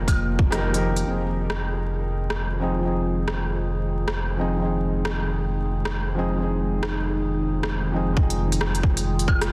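Swung sixteenths at 135 BPM in 4/4 drive this rainy, wistful future garage fragment in F minor, where a garage kit of crisp hats, claves and rim clicks with a soft-clipped snare runs beneath a tight, up-front electronic kick heard briefly at 0.1 seconds and again from 8.2 seconds, a round sine sub bass holds F1 under a soft, felt-muted upright piano with tape echo, and a dark, detuned, warbling lo-fi pad with chorus and 12-bit sampler grit passes through a filter sweep from 1.1 seconds, the piano, pad and bass pumping against the sidechain as the harmony moves from Eb/F to Fm7 over vinyl crackle in a dense, heavily limited master.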